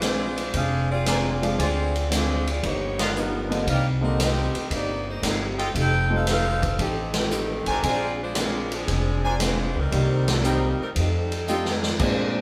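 A swung four-beat pulse drives this joyful, energetic big band swing fragment, cut from a longer piece, with a punchy kick, medium-tuned snare, hi-hat, ride and crash from a drum kit sitting up front in a big room, its top rolled off. A woody, thumpy pizzicato upright bass on gut strings anchors the low end, while a dark, clean hollow-body archtop guitar is picked quietly in the background. The bright saxophone section carries the melody with loose, vibrato-laden phrasing, and a clear trumpet section with a smooth top punctuates it with ensemble stabs, the whole band hitting accents together along the way. An intimate concert grand piano, warm and polished with audible action noise and long sustain, comps in two stretches, and a drum fill beginning at 11.5 seconds leads into a tight, close-miked trombone section that enters very quietly at 12.0 seconds with brilliant sustained chords. The band plays live in one room, wrapped in a wet studio reverb.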